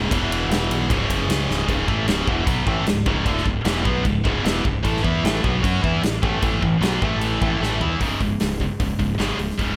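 A bright, double-tracked high-gain guitar riff sits up front from the start alongside a growling, overdriven fingered bass and a punchy, bright-cymballed acoustic rock kit in a big room, driving this relentless, aggressive heavy metal excerpt through power-chord changes, with drum fills at 1.5 and 7.6 seconds leading into each new section before it cuts off at 9.8 seconds.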